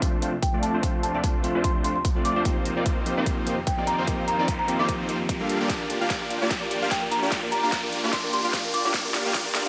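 Swung, half-time 16ths at 148 BPM drive this lush, emotional future bass build-up in G minor, where a punchy overdriven electronic kick and a big-room dance kit with a huge snare and metallic hats sit beneath huge detuned supersaw chords under a filter sweep, a bell-like tine electric piano that stops at 5.7 s, a faint shimmering ambient pad, a woody soft-mallet folk marimba melody with 12-bit grit and tape echo, a background riser from 2.0 s, and a gentle tine-like synth pluck playing arpeggios with chorus and dub echo from 5.7 s alongside a drum fill, moving through Dm7, F7sus4, Gm7 and Cm9 in a moderate hall reverb.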